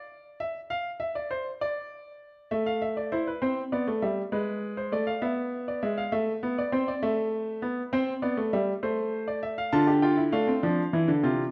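Classical baroque-style three-part fugue in D minor for solo grand piano, serious and driving at 66 BPM in a straight 12/8, its brilliant, up-front tone spanning C3 to A5 in a wet recital hall reverb as the harmony moves from a chordless opening through Am, E7/G# and back to Am before settling on Dm at 9.7 seconds in this short section cut from a longer piece.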